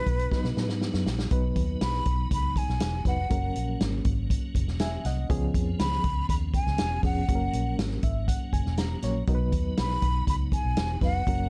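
A breathy, vibrato-laden concert flute carries the melody through this joyful, uptempo 1960s-style soul excerpt at 121 BPM in B major, over a reedy electric piano with fast tremolo that adds a fill at 7.8 seconds, piping tonewheel organ chords with key click, chorus vibrato and a slow rotary speaker, a round, foam-muted fingered bass, and a punchy, up-front vintage drum kit that opens with a fill at 0.3 seconds, all set in a dark, warm studio reverb as the chords move from B through F# and C#7 back to B.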